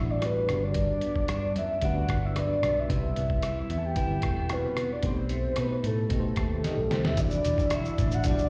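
A straight, even groove in 4/4 sets this laid-back, nostalgic indie and bedroom pop clip in motion, with a lo-fi sampler-style drum kit coming in at 0.2 seconds: a compressed, muffled, tape-tinged sound with a thumpy kick, fat snare, hi-hat, rim click and shaker sitting up front. Beneath it, a vintage foam-muted picked electric bass gives a dark, round, punchy low end, while a soft octave-layered synth lead carries the melody up front, full-bodied and rounded with a sub octave, vibrato, phaser, subtle chorus and slapback echo. A reedy, worn reed electric piano adds slightly out-of-tune accompaniment pulsing with fast tremolo through its built-in speakers, and a bright, twangy, slightly broken-up electric guitar through a small old amp sits in the background, wrapped in lush chorus, warbly pitch drift and slapback echo. The harmony moves from Gmaj7 to Cmaj7 and a tense B7b9b13 before a drum fill at 6.6 seconds leads into Em9. 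At 7.2 seconds a thick, airy, detuned sawtooth unison pad enters in the background with chorus and phaser, all heard as a live gig through the venue's PA with recital hall reverb.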